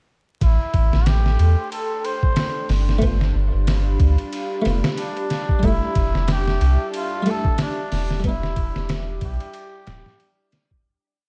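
Melancholic and hypnotic, this short trip hop piece moves at 92 BPM in A minor with a swung sixteenth-note feel, cycling through Am7, G7, Fmaj9 and Em7 before fading out from 7.4 seconds. A gritty, pitched-down sampler-style drum kit with a thumpy kick and a medium-tuned snare plays a looped breakbeat with edits, sitting up front beside a deep, round dub sub bass that carries a syncopated riff. A cup-muted trumpet, veiled and raspy with light vibrato and scooped notes, spins a jazz-style solo of call phrases through tape echo. A detuned sawtooth pad holds moody chords behind it, while a buff-stop harpsichord enters at 3.0 seconds with dry, lute-like rootless chords and syncopated pushes, colored by tremolo and tape echo. In the background, a tense, string-like drone holds a high note through a phaser, and the whole mix carries a dark, warm production with vinyl crackle.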